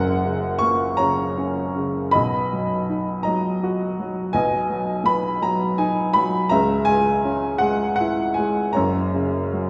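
A woody, slightly detuned upright piano sits up front and plays alone across this short 9.7-second excerpt of a reflective, melancholic classical piece in B major, moving in a rubato 6/8 at about 54 BPM through F#, B, C#m and back to F#, spanning F#1 to C#6 inside the wet reverb of a recital hall.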